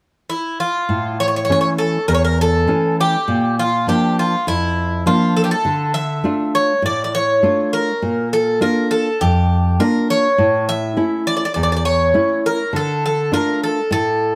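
A moderate plate reverb gives this short cut from a longer piece a lingering, roomy halo around two close, up-front acoustic instruments. It is moody, brooding Greek folk in the manner of a bouzouki band, moving in a straight, steady four. The Greek bouzouki carries the melody from 0.3 seconds, its picked double strings ringing metallic and bright, with some octave-doubled courses adding shimmer. At 0.9 seconds a fingerpicked nylon-string guitar enters in a classical style, supplying a bright accompaniment that reaches from deep bass notes up into the middle register. The harmony circles darkly through A, B-flat and D minor, returning to A before settling again on D minor, which keeps the atmosphere tense and unresolved.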